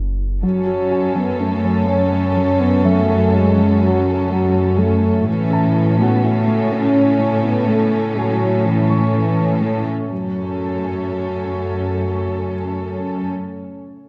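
A straight 5/4 pulse at 124 BPM drives this brooding, tense cinematic cue in F# minor, with a very quiet, tight sequenced synth running detuned sawtooth arpeggios until 10.0 s. Up front, the cello section holds the bass while mellow French horns sustain chords, and a lush, distant violin section carries a second line. A deep, moody pad with chorus enters at 1.6 s, an open-sounding concert grand piano adds delayed texture in the background, and the harmony moves from F#m to A and back at 10.1 s, set in a wet scoring-stage reverb with a dark production.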